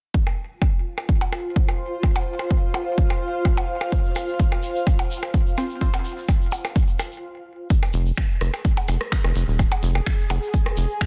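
Minimal techno in F minor at 127 BPM, this hypnotic, quirky cut from a longer piece opens on a punchy, tape-warm electronic kick held up front, joined almost at once by overdriven percussion blips and a rim click treated with tape echo. A cloudy, blurred granular pad drifts between F4 and F5 under sidechain pumping, while a muted, detuned dub chord stab with phaser and tape echo appears briefly around 3.9 seconds alongside a grainy, bright tube shaker that carries on to the end. After a short stop at 7.2 seconds, the second section brings in a rubbery, nasal square bass, bouncy and up front, moving between Eb1 and F1, plus a minimal click drum kit of finger snaps and clicky, overdriven hi-hats with soft clipping on the snare. A swarming, warbling drone on Ab4 then creeps in at 8.6 seconds, tense and evolving in the background with phaser and pumping. The dense, heavily limited modern master keeps the room dry.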